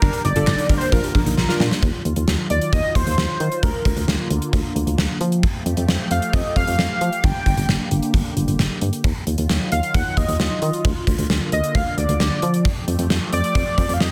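A bold, retro octave-doubled sawtooth lead with chorus and phaser carries the melody throughout this nostalgic, wistful synth-pop excerpt in Bb major at 133 BPM, over a swirling, evolving phased analog pad and a punchy, round FM bass that sits up front beside a gated 80s kit of tight kick, snare, hi-hat and handclaps in a bright stone room. A funky, warbling polysynth comp and a full-bodied analog pluck playing arpeggios through delay sit in the background only until about 1.8 s, where a drum fill from 1.4 s leads into the main section's Ebmadd9, Bb/D, Fadd9 and Gm progression. Light reverb, small room ambience and a dense, heavily limited modern master give the sound a polished feel.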